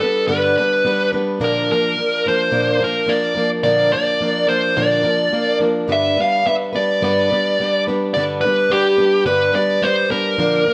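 A straight 4/4 pulse drives this short, jangly, warm rock excerpt, with the harmony moving from G to Bb and returning to G at 5.9 seconds. A dark, smooth, overdriven electric lead guitar sits up front with slapback echo and carries the melody throughout, while a picked, plugged-in steel-string acoustic guitar with a parlour character supplies the accompaniment alongside it. A moderate echo-chamber reverb gives the pair a roomy sheen.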